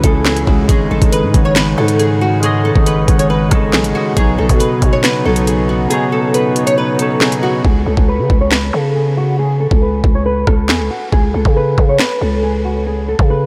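A growling, buzzy 808-style bass sits up front in this ominous, cold drill excerpt at 138 BPM in a half-time 4/4 feel, ranging from G#1 to C#3 under a fingerpicked nylon-string guitar melody that runs the whole 13.5 seconds between F#4 and C#5, small and warm, colored by analog chorus, tape echo and a low-pass filter. The drill kit is electronic and tape-warm, with a knocking kick, sharp snare, hi-hats, rim clicks and finger snaps, though the kick drops out from 5.9 to 7.6 seconds. Through the opening stretch an overdriven, barky tine electric piano heard through a combo amp supplies gritty accompaniment, while a pipe organ on foundation stops holds thick, romantic chords in the background, both stopping around 7.6 seconds. From there the hi-hats fall away and the guitar carries a filter sweep as the harmony settles from C#m, G#sus4 and Badd9 onto a bare C#5. A huge ambient reverb with a long 6.9-second tail soaks the mix, giving it a dreamy space.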